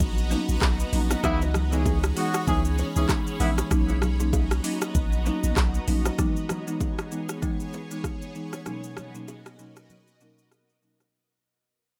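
A sultry, hypnotic afrobeats fragment with a swung feel opens on an up-front electronic kit of deep kick, metallic hi-hats, handclaps, rim clicks and shaker, a punchy sine sub bass with a pitch-drop attack, very quiet acoustic congas and bongos, and a bright, blurred granular pad pumping under sidechain with phaser and tremolo; a dry, woody folk marimba enters just after, a mellow, distant horn section steeped in delay and plate reverb sounds briefly from 1.2 to 3.5 seconds, and the sub bass stops at 6.1 seconds as the music fades out over its closing stretch.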